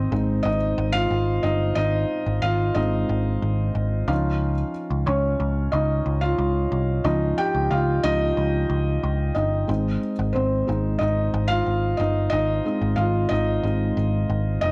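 A soft, intimate felt-muted upright piano with audible action noise sits up front over a dark, round picked electric bass in this anthemic, uplifting piano-driven pop excerpt at 91 BPM in Ab major, moving from Ab to Dbadd9 at 4.1 seconds and back to Ab at 9.7 seconds, with a barely audible electronic impact in the first 1.8 seconds and a moderate echo-chamber reverb lending a studio ambience.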